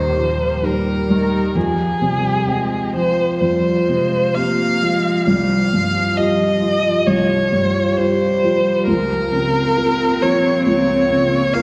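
Heard in the generous, wet reverb of a church or concert hall, this short neoclassical passage for piano and strings carries a melancholic, fragile mood over a rubato 4/4 pulse. A solo bowed violin sings the melody up front, its rich, expressive tone shaped by vibrato and portamento, though it still sounds slightly distant in the room. Beneath it, a single cello sits in the background with a second line, sharing the same bowed vibrato and sliding portamento. A felt-muted upright piano plays the accompaniment from C2 up to G5, soft and intimate with a short sustain and the audible noise of its action. A deep, moody ambient pad holds sustained chords underneath, its slow attack, long release, chorus and built-in reverb giving a dark sub-octave bed as the harmony moves from Eb through Fmadd9 and Csus4 to Bbm/Db.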